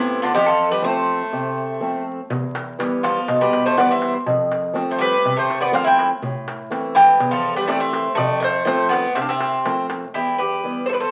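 Two metallic, double-strung bouzoukis open this tense, dramatic fragment of Greek folk in a straight four, one carrying the melody up front while the other plays a second line beneath it, over a boxy fingerpicked archtop guitar with audible finger squeak, before a crisp, saturated, metal-shell darbuka struck with hard hands joins at 2.3 seconds, all heard through a wet studio reverb and the crackle of a very old 78 rpm record.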